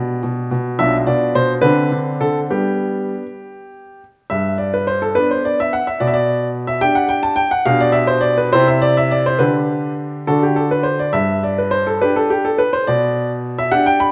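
A 6/8 pulse at 66-73 BPM in dotted quarters, played with rubato, carries this elegant, cheerful classical-period sonatina in G major, cut from a longer piece, where a solo baby grand piano, clear and intimate with audible action noise and long sustain, sits up front in a moderate recital hall reverb, ranging from B1 to B5 and moving from an opening section into a second one at 4.3 seconds that settles through C, G/D and D before closing on G/B at 12.9 seconds.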